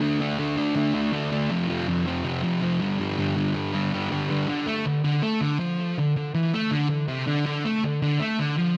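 A moderate stone-room reverb, lasting about 1.3 seconds, surrounds a raw, menacing rock excerpt cut from a longer piece. A lone electric fuzz guitar sits up front, its dark, distorted tone double-tracked and fed through a tape echo. The picked part ranges from F2 to D4 and moves through D5, F5 and G5 chords in the opening stretch. At 4.5 seconds the music shifts to a new section built on D minor. The tempo is a driving 161 BPM in a straight 4/4, keeping the feel tense until the guitar stops at 8.8 seconds.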